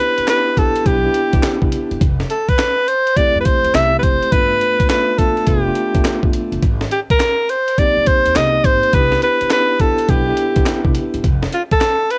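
Dry, lo-fi cassette home-recording sound frames this bouncy, upbeat new jack swing R&B fragment in C major at 104 BPM with a swung 16th feel, where a bright, vibrato-laden jazz alto saxophone with soft attacks and scooped notes leads up front over a mellow, tape-tinged tine electric piano, a woody, dark pizzicato upright bass, and a gritty, compressed sampler-style breakbeat kit of thumpy kick, high-tuned snare, hi-hat and handclaps, moving through Cmaj9, Fmaj7, G7 and Abmaj9 before the 12.2-second cut.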